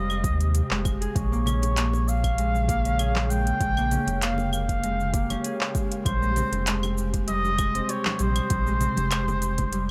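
A cup-muted trumpet sits up front with a soft, veiled jazz-style solo melody, its vibrato and scooped notes trailed by digital delay and heard as if from a distant, roomy space. This short passage of organic downtempo has an earthy, warm mood, set in 4/4 with a light swing on the sixteenths and moving from Abmaj7 to Bbm7. Beneath the horn, a fingerpicked Celtic harp plays ringing acoustic arpeggios through its own delay, while an ethereal, airy pad of detuned sawtooth tones holds slow-attack chords in the background, wrapped in ensemble chorus and reverb and pumping with the sidechain. A deep, round sine sub bass sits up front and pumps as well. The groove comes from an electronic kit with crisp hats, cabasa, claves and handclaps carrying a tape-like warmth, an overdriven, layered kick that enters at 0.2 seconds, and close, dry, ringing congas that join in the background at 1.5 seconds, with the kit and kick sounding re-recorded in a small room.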